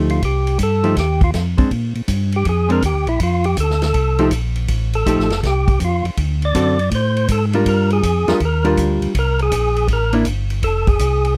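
A dry, close recording with a 1970s studio feel carries this bluesy, soulful soul jazz organ trio excerpt, swinging at 161 BPM in F mixolydian. A percussive tonewheel organ takes the solo melody with a fat, lightly overdriven tone, key click and slapback echo through a slow rotary speaker, while a mellow, round tonewheel organ carries the bass line with chorus vibrato. A dark, clean hollow-body archtop guitar comps until 10.3 seconds over a swinging big-band drum kit with a punchy kick and medium-tuned snare, as the changes move from F9 through D7 and Gm7 to C7 before settling on F5.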